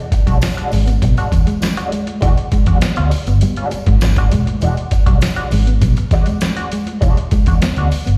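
Funk at 100 BPM in E mixolydian, a playful, strutting excerpt cut from a longer piece and resting on an E9 chord, heard as a live gig through the venue's PA with recital hall reverb. A gritty, pitched-down sampler-style drum kit with a thumpy kick and medium-tuned snare sits up front beside a round, foam-muted vintage fingered bass, while a mellow, dark guitar plays a clean fingered riff with slapback echo. A bright, twangy direct-recorded guitar adds picked accompaniment through wah, tremolo and slapback echo, with very quiet high-tuned congas and a jingly tambourine in the background.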